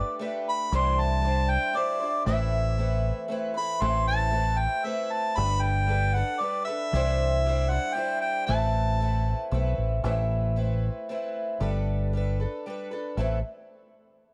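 A mellow, distant harmonica carries the melody from the start alongside a shimmering, octave-doubled twelve-string acoustic guitar picking a boxy accompaniment, and a round, dark fingered electric bass enters at 0.7 seconds in this wistful, reflective folk rock and heartland rock passage at 116 BPM in 3/4, set in A minor. The chords move through Gadd9, Cadd9 and Amadd9 in a cycling pattern. The harmonica falls away at 9.5 seconds, leaving guitar and bass in a small room with light reverb until the cut at the end of this fragment of a longer piece.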